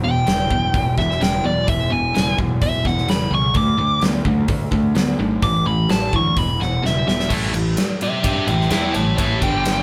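Blues rock in a power-trio, southern rock vein, this short, swaggering and driving cut moves in a straight four with a live-in-one-room feel and a moderate studio reverb. A dark, smooth lead guitar with overdrive sits up front carrying the melody, while a biting, double-tracked overdriven rhythm guitar picks out the riff beneath it. A fuzz-laden picked electric bass with a bright, direct-and-amped edge anchors the low end, and a big acoustic rock kit enters at 0.3 seconds with a punchy kick, medium-tuned snare, hi-hat, and bright ride and crash cymbals in a large room. The harmony moves through power-chord shapes on E, D and A before a drum fill from 6.8 seconds leads into a new section at 7.3 seconds, where the lead guitar breaks into a solo over an A chord that runs to the end.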